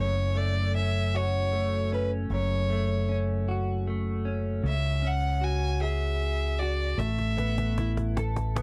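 A bright, intensely bowed solo violin with light vibrato carries the melody over a clean, compressed, double-tracked electric guitar and a round, punchy fingered bass in this aching, melancholic six-eight pop ballad in F# minor, moving slowly at 51 BPM through F#m, C#sus4 and Asus2. A woody cajon with faint snares arrives at 7.0 seconds for a short fill, and the violin drops out at 7.9 seconds. The sound is dry and close, like a 1970s studio recording, with the string, guitar and bass placed up front.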